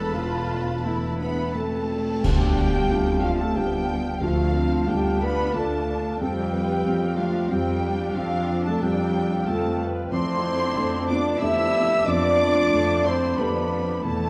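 A cinematic, emotional film score cue in D dorian at 91 BPM in a rubato 3/4, full of longing, where a lush, expressive violin section carries the melody over soft felt-muted upright piano with audible action noise, a rich viola section, a close cello section and a distant double bass section, while a second violin section, a dark clarinet, a roomy cor anglais and an airy, hollow flute weave second lines, a distant horn section holds sustained chords, a very quiet, bright harp rings out arpeggios, and a dry hit of clash cymbals and bass drum marks the arrival of Dm at 2.2 seconds, all in a dark production with moderate scoring-stage reverb.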